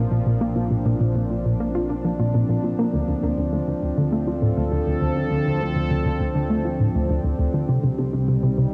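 Cosmic and expansive, this ambient, sequencer-driven space music moves at 101 BPM in a straight 4/4, led by a tight, driving sequenced synth riff of detuned sawtooth and square waves with a filter pluck, up front with chorus, cassette tape and analog delay, beside a bright, evolving, soft-attack resonant pad sustaining chords from Bbadd9 to Dm7 and Cm through chorus and tape, while a fat, nasal, saturated analog bass sits in the background, the home cassette recording set in a wet, lush hall reverb.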